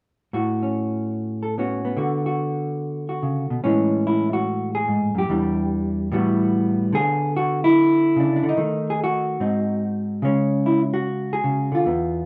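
A clean, dark-toned hollow-body electric guitar plays alone up front, fingered across a range from low E2 up to A4 in this playful solo jazz excerpt, swinging its eighth notes at 146 BPM in A major. The harmony moves through rich colours such as A69 and D6 before a second section opens on Amaj7 and passes through Em7, E13, D#dim and G#7 to settle on C#5. A moderate club reverb surrounds the guitar.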